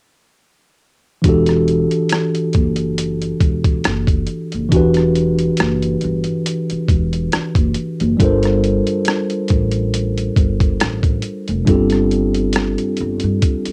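R&B with a neo-soul lean, this short cut from a longer piece sits at a slow 69 BPM in E minor, with a lightly swung sixteenth-note feel that gives it a sultry, smooth mood. A tine electric piano carries the accompaniment up front, its clean tone heard through built-in speakers and dusted with cassette tape character, moving from an Em11 chord to Gm11 at 8.2 seconds. Beneath it, a pizzicato upright bass with steel strings sounds woody and growly, sitting a little lower in the mix. The boom bap sampler-style drum kit is compressed, pitched down and gritty, pairing a thumpy kick with hi-hat and rim click, and it also carries the cassette tape colouring. All three parts play together from 1.2 to 13.7 seconds in a dry home recording made on cassette.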